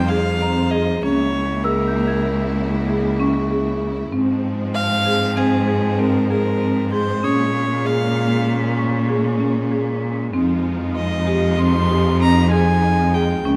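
Contemporary chamber music in an uneven 5/4 meter, shimmering and hopeful, this short cut from a longer piece sets a nasal, reedy violin melody with a period-style gut-string tone over lush, bowed chords from a symphonic string section and a rich cello bass, sung with vibrato and portamento up front. A woody marimba with rosewood bars plays mid-forward arpeggios from 0.1 s, while a delicate, bell-like celesta adds dry, close-miked texture in the background until 10.6 s. The dark production sits in a moderate scoring-stage reverb as the harmony moves from Fm9 through Dbm6, Ab69 and Bbm7 to Fm7.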